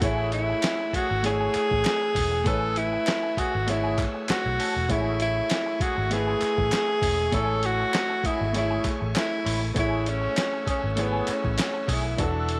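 Lush 1970s-style soul at 99 BPM in 4/4 with a light sixteenth-note swing, moving from F#m9 to Amaj7 and back in this warm, lush excerpt. A breathy tenor saxophone carries the melody up front with light vibrato and scooped notes, over a clear grand piano with audible action noise, a very quiet reedy organ on a slow rotary speaker, and a slightly broken-up wah guitar riff tucked in the background. Underneath sit a foam-muted, round fingered bass and a gritty, pitched-down boom bap sampler kit with a thumpy kick, while distant group handclaps enter at 0.6 seconds, and the mix is set in light digital ambience.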